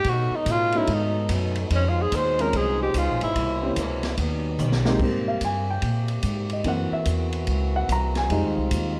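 A clear tenor saxophone opens this energetic, joyful big band swing excerpt with a soft-attacked, vibrato-laden solo that sits up front and runs until 3.7 seconds. Beneath it, a trombone section holds sustained chords with light vibrato, a thumpy pizzicato upright bass on steel strings sets the foundation, and a swinging drum kit with a punchy kick and medium-tuned snare keeps a 145 BPM 4/4 pulse with a moderate swing feel. A boxy, picked archtop guitar adds accompaniment in the background, finger squeaks included, while an intimate upright piano with audible action noise and short sustain joins almost at once. After a drum fill at 4.6 seconds, the piano takes its solo at 5.0 seconds as the music settles into Ab major, moving through rich jazz harmony such as Abmaj9, Gb7#11 and Fm7. The sound carries light reverb and the worn, warbling character of old cassette tape, with a gently drifting pitch.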